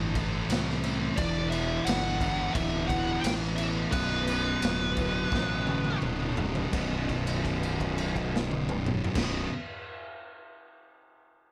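Cut from a longer piece, this brooding, sludgy stoner and doom metal passage sits in a small, pumping room, with a gritty, saturated garage drum kit and a fuzzed-out fingered bass pushed up front. Behind them, a pair of thick fuzz guitars and a dark, double-tracked overdriven guitar grind out the riff through Am, Em and Bm, while a compressed fuzz lead guitar with wah and tape echo carries the melody from 1.2 to 6.0 seconds. The music slows as a drum fill leads into a closing B5 section at 6.7 seconds, where a held note hangs until 9.2 seconds.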